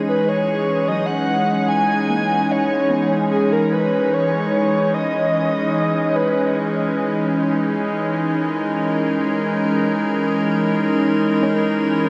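An evolving wavetable pad sits up front in this reflective, serene ambient piece, holding sustained C# minor add9 chords with a bright, detuned, morphing tone, slow attack and long release, dressed in chorus and shimmer reverb. Above it, a breathy, flute-like synth lead carries the melody from the opening until about 6.6 seconds, its vintage, warbling voice coloured by vibrato, analog chorus, shimmer reverb and a diffuse ambient delay. A glassy, ethereal glass harmonica fades in across the whole passage, staying dark and pure in the background with its own shimmer reverb. Very quietly underneath, a soft, round pluck traces low arpeggios with a fast, decaying attack and a wave-folded edge, dropping out and then briefly returning at 11.4 seconds. The tempo is a slow 74 BPM in C# dorian, everything is bathed in a huge, wet ambient reverb, and the clip is cut from a longer piece.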